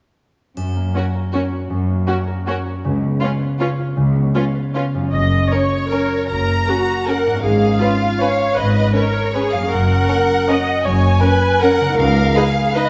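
Classical orchestral ballroom waltz in F# major at 158 BPM in 3/4, elegant and festive, its uneven beats and rubato giving this short excerpt a gently swaying lilt over chords moving between F# and C#7. A mellow, ringing concert harp spins fingerpicked arpeggios while cellos hold the bass, a faint triangle sounds only until 1.3 s, and from 1.0 s a lush violin section carries the expressive, soft-attacked melody above a smooth second violin line and an up-front viola accompaniment, all with rich vibrato. At 5.1 s the warm double bass section joins beneath the cellos, and the whole ensemble sits in a wet scoring-stage reverb.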